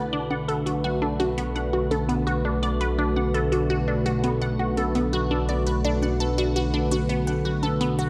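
A squelchy, resonant blip pluck plays a riff up front through phaser and analog delay in this hypnotic, mysterious stretch of sequencer-driven ambient space music cut from a longer piece. Alongside it a bright, detuned sawtooth pad with chorus, a filter swell and a slow attack sustains a Bm7 chord, while a fat analog bass holds B1. Electronic congas and metallic hi-hats treated with analog delay enter in the background at 0.3 s, and moderate plate reverb soaks the mix in a dreamy haze.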